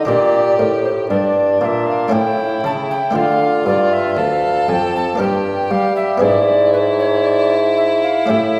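Set in a wet concert-hall reverb, this introspective, flowing baroque-style sonata movement in three-four time pairs an airy, chiffy tenor recorder melody with vibrato and a rich, smooth bowed violin second line, while an up-front bassoon with light vibrato carries the bass and a muted, lute-like buff-stop harpsichord supplies a dry, plucked accompaniment.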